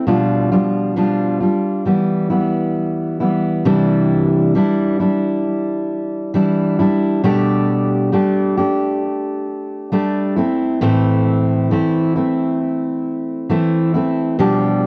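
Worn, warbling old cassette tape gives this heartbroken pop excerpt a drifting, unsteady pitch, set in a moderate studio reverb. A lone fingerpicked steel-string acoustic guitar sits up front with a dark, full-bodied dreadnought tone, moving slowly at 67 BPM in A minor. It passes from G7/B and Em into a longer stretch from 3.6 seconds through Cadd9 and Gadd9/B before settling on Am at 10.4 seconds.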